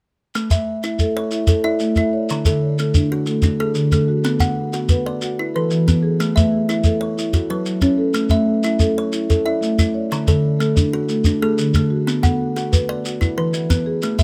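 A close, lightly reverberant sound carries this brief, rippling cut from a longer Southern African traditional piece in A major, where a grainy shekere sets a 12/8 pulse at 123 BPM from 0.3 seconds, a bright, ringing kalimba with a hollow-box thumbnail pluck and a mellow, round marimba struck with soft mallets and touched by tape echo weave interlocking mbira-style arpeggios over a cycle moving through A, D, Bm and E with a turn to F#m.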